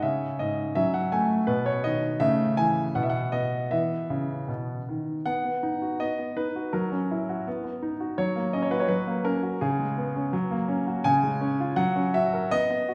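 Graceful and playful, this short excerpt from a classical-period piano sonatina moves at 82 BPM in 2/4, with a rubato feel that lets the phrasing breathe. A bright concert grand piano plays solo throughout the full 12.9 seconds, ranging from G#2 to G#5, its brilliant upper register set against a deep bass. The opening passage sits in E major, moving through C#m, F#m and B before a brief unharmonized moment and an open E5 chord. At 5.3 seconds the music shifts to B major, alternating B, F#7 and F# harmonies before touching on C# near the close. The piano's tone is natural and sits up front in the mix, even as the listener seems placed further back in a recital hall whose generous reverb, with an RT60 of 1.8 seconds, gives each phrase a lingering bloom.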